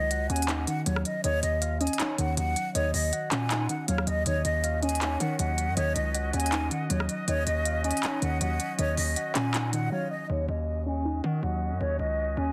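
A heavy, saturated 808-style bass drives this brooding, menacing hip hop and trap excerpt at 159 BPM in a half-time feel in Eb minor, beneath a breathy, expressive concert flute melody, a dark octave-layered synth lead in the background, a warbling lo-fi pluck with chorus and a crisp, up-front trap kit of hi-hats, handclaps and rim clicks, while a small airy flute group adds sustained chords from 4.3 s and a brief break at 9.9 s gives way to a filter sweep at 10.3 s in a dense, heavily limited mix.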